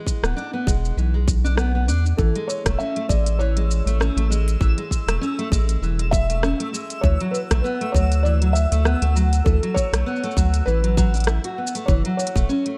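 Folktronica in an intimate, wistful mood, where a fingerpicked steel-string acoustic guitar rolls out arpeggios through a digital delay over a tight electronic kick, smooth hats with rim clicks and shaker, and a round, deep analog bass up front, before a felt-muted upright piano with audible action noise enters at 2.2 seconds with a soft, boxy melody, and a twinkling granular shimmer glints in the background of the dark, dry mix.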